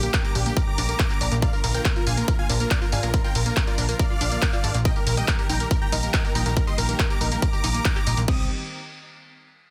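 A driving, bittersweet uplifting trance drop bursts in at once, with a huge, detuned supersaw lead carrying a euphoric melody through digital delay over smooth background strings holding sustained chords, a tight sequenced synth playing chorused, phased arpeggios and a plucky analog bass, each pumping to the sidechain, while a punchy, tape-warm electronic kick joins up front at 0.1 seconds beside a big-room kit of crash, handclaps, hi-hat and tambourine in a small room, the whole mix dense and heavily limited.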